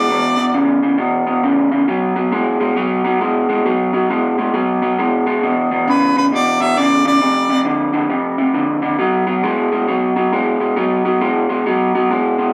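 This gritty, rollicking blues moves at 135 BPM in a swung 4/4, tuned slightly sharp of standard pitch. An electric guitar through a small old amp carries the riff for the full 12.5 seconds, picked in a low register with a dark, slightly broken-up, lo-fi tone that sits up front. The harmony runs through E5, B5, E5, F5 and B5. A clear, overdriven harmonica plays a jazz-style solo melody, heard briefly at the very start and again from 5.9 to 7.6 seconds, with vibrato, tongue slaps and scooped notes placed prominently in the mix. The band plays live in one room with a moderate large-studio reverb, giving this excerpt, cut from a longer piece, a raw, roomy feel.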